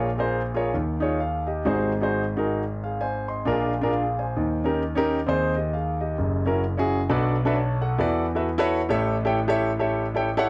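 Gospel solo piano, jubilant and hopeful, played on a warm concert grand with a deep, natural bass and an up-front presence in light reverb. The swung eighths carry the piece through rich seventh and suspended chords across a broad span of the keyboard. At 7.1 s the music moves into a new key before this short fragment of a longer piece breaks off at 10.5 s.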